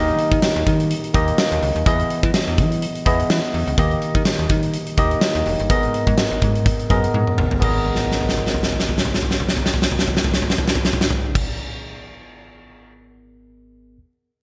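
A bright, digital 1980s-style production with a moderate plate reverb frames this moody, nostalgic pop excerpt in a lightly swung 4/4. A bell-like tine electric piano, clean and up front with tube saturation and lush chorus, carries the chords, while a snappy FM bass with a metallic attack plays until 11.4 seconds. A huge arena drum kit of punchy kick, fat snare, hi-hat, tambourine, toms and crash cymbal booms through gated reverb, with fills from 7.1 seconds and again from 7.9 seconds as the second section arrives.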